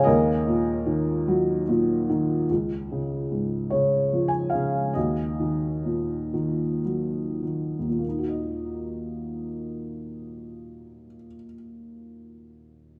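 A felt-muted upright piano plays solo, its soft, boxy tone sitting close and intimate to the listener. This is a wistful, melancholic piece of lyrical classical solo piano in 6/8, played with free, rubato timing. The single piano spans from deep bass notes up into the upper register, and its mellow, dark voice is carried into a long, wet plate reverb that lingers well after each note. The harmony drifts from a minor chord to a major one at 2.5 seconds, and the pace slows from there until about 8 seconds, with the opening minor chord returning at 5.0 seconds along the way. The fragment is lifted from a longer work and moves through three brief sections within about thirteen seconds.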